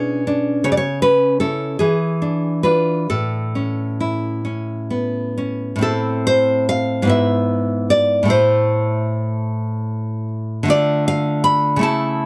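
A lone nylon-string guitar opens this sunny, romantic classical fragment, fingerpicked in 6/8 with a free, rubato feel. Its bright, up-front tone is captured by close, detailed microphones in a nearly dry room, so every finger squeak comes through. At 5.8 s the music moves into a second section and the harmony turns to a darker shade before the fragment breaks off at 12.3 s.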